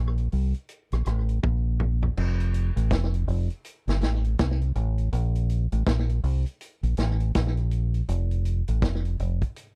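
Sunny and laid-back, this short roots reggae excerpt moves at an easy 81 BPM in F major, with a swung sixteenth-note feel. A deep dub fingered electric bass sits up front from the very start, its dark, round tone pitched low and kept dry and direct. A vintage drum kit joins just after, bringing kick, snare, rim click, hi-hat, toms and crash cymbal, with a tight kick, a medium-tuned snare and dark cymbals under a rolled-off top. Slapback echo trails the drums, lending them a vintage bounce while they stay mid-forward and close. A drum fill from 1.4 to 2.2 seconds carries the opening passage into the next, which runs to the end at 9.8 seconds. The whole take has a dry, close 1970s studio sound with little room around the instruments.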